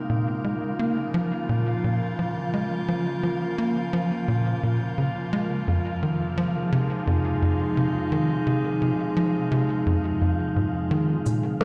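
Drenched in a cavernous concert-hall reverb and heard through a big sound system in a bare stone room, this cosmic, expansive slice of sequencer-driven space music moves at 86 BPM in 4/4, settling on Bbm before shifting to Fm7 at 5.7 seconds. A punchy sawtooth sequencer bass drives a plucked riff with analog chorus and tape echo, while a detuned, morphing wavetable pad holds bright sustained chords and a breathy, wind-like tuned noise layer drifts quietly above. Only at 11.3 seconds do overdriven cabasa and electronic percussion blips appear, up front with a small-room character, just as the piece cuts off.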